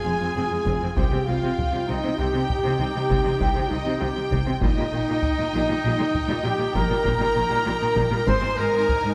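Mellow French horn chords, distant trumpet stabs, a lush violin melody with vibrato, and an airy flute ensemble shared with a second violin line open this dark, heroic epic orchestral film-score excerpt at 66 BPM in a broad 12/8, with expressive violas sliding in the background, rich cellos and double basses carrying the bass, heavy-stick taiko drums arriving at 0.7 seconds, and a very quiet timpani sounding C3 at 1.0 seconds, the orchestra set in a moderate scoring-stage reverb as the harmony moves from F minor through C minor and Eb over Bb to Ab.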